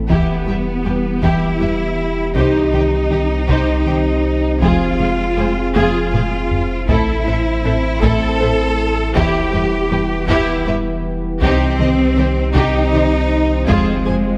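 Vast and relentless, this cinematic hybrid orchestral and electronic film-score cue in a slow 6/8 rests on an ominous, rumbling drone, a punchy sub bass with a pitch-drop attack, and a quiet bowed double bass section, while a focused cello section sits up front. Behind them, a mellow, distant French horn section holds chords. A soft-attack violin section carries the expressive melody over a smooth, even second violin line and an intense viola accompaniment. A round, tine-like thumb-piano-style synth pluck arpeggiates through chorus, phaser and tape echo, and a hard-stick taiko ensemble drives the pulse with a fill from 5.8 to 6.9 seconds, all set in a moderate concert hall reverb.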